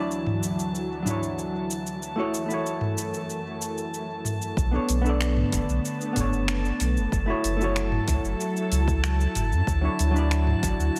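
Sunset chillout in B minor at 94 BPM, this relaxed, wistful cut from a longer piece moves in a straight 4/4 through Dmaj9, F#m7 and Bm9 chords. A dark, clean hollow-body jazz guitar sits up front with dub echo, playing accompaniment over silky, warbling string-machine chords softened by ensemble chorus. High above, a glassy texture of drifting overtones holds an A5 with chorus and built-in reverb. A smooth R&B drum kit of finger snaps, tape-warm hats, shaker and toms enters at 0.1 seconds, also treated with dub echo. At 4.6 seconds the second section arrives as a round, deep sine sub bass comes up front and an overdriven electronic kick joins in the background. The mix is echo-heavy with light reverb.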